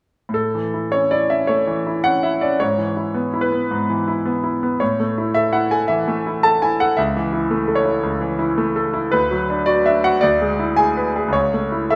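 A clear, up-front grand piano opens at 0.3 s and carries this passionate romantic character piece alone until 12.0 s, phrasing with flexible rubato over a steady four-beat metre. Its smooth, vintage tone has a short sustain, set in a moderate recital-hall reverb, and the harmony moves from the home chord through the dominant toward a cadence as this passage, cut from a longer work, breaks off.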